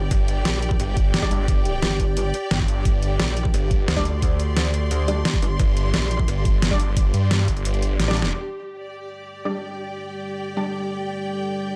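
Lightly reverberant and aggressive, this dark technical drum and bass excerpt pairs an overdriven, knocking electronic kick and a dubstep kit of deep snare and bright hats with a snarling, detuned saw bass and a metallic, chorused FM wobble bass, while a lush, close string section pumps above, bold orchestra-hit-like synth stabs tinted by tape and delay return from 4.0 s, and after a drum fill at 8.0 s a deep, mellow ambient pad with 12-bit grit arrives at 9.6 s.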